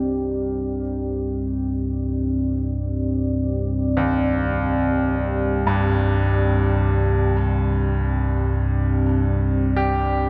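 A bright, brilliant grand piano plays arpeggios with long sustain and tape echo through this unsettling, desolate dark ambient drone. Beneath it, an ominous, rumbling drone fades in across the full 10.3 seconds with phaser and reverb, while a moody pad of detuned sawtooth unison and sub octave holds sustained chords with chorus and a moving notch. A wet cathedral reverb surrounds this brief excerpt, cut from a longer piece.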